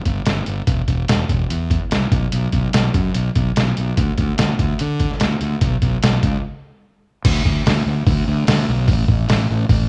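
A fuzz-drenched fingered electric bass anchors this moody, bittersweet indie rock fragment, its overdriven tone round and punchy as it moves between E1 and D3 close up in the mix. Beside it sits a trip hop sampler-style drum kit of kick, snare, hi-hat and crash cymbal, compressed, pitched down and muffled, with a thumpy kick and a medium-tuned snare, all re-recorded in a small room. The tempo is 146 BPM in a straight 4/4, and the two parts play together from the first moment to nearly the final second. A break arrives at 6.4 seconds, and a new section begins at 7.3 seconds and runs to the close. The sound is dry and up front, with the rough character of a home demo, and the piece is cut from a longer work.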